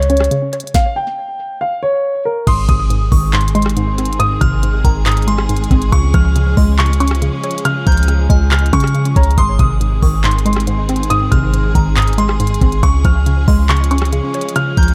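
A half-time trap groove at 139 BPM in Ab major, its up-front electronic kit with knocking kick, sharp snare, crisp hats, handclaps, rim clicks and crash, drives this triumphant yet wistful excerpt, with a brief stop from 0.7 to 2.5 seconds. A dark, mellow baby grand carries the melody over a bouncy, nasal square-wave pluck with chorus and a deep, boomy 808-style bass, while the chords move between Db and Ab. At 2.5 seconds a rich, biting symphonic string section adds sustained chords and a delicate, tinkling FM bell line with chorus and phaser sits in the background, all in a dry, echo-heavy mix where analog delay colours the piano, pluck and bell.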